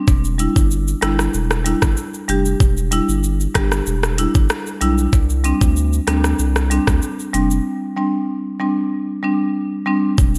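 Bright 1980s-style digital production with light reverb frames this bouncy, hypnotic dancehall clip at 95 BPM in E phrygian, with all three parts sitting up front. An electronic island pop kit, re-recorded in a large room, sets a knocking kick and metallic hats against rim clicks and shaker, while a deep, thick saturated sine sub bass with a fast attack sustains beneath and a woody rosewood marimba played with medium mallets carries the accompaniment. The harmony moves from Em7 to Csus2 at 5.1 seconds before a break on Gsus4 at 7.7 seconds.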